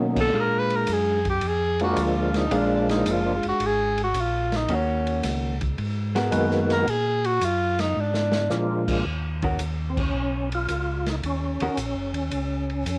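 Late-night and smoky, this soul jazz organ trio excerpt swings at 110 BPM in 4/4, with a breathy, whispered tenor saxophone soloing up front with scooped notes and vibrato from 0.2 to 8.5 seconds over a fat, lightly overdriven tonewheel organ melody full of key click and slow rotary speaker, a round, mellow second organ carrying the bass, a dark, compressed hollow-body electric guitar picking the accompaniment, and a boomy-kicked drum kit with dark cymbals that plays a fill before a band accent at 9.9 seconds, all set in a small room with the character of a home cassette recording.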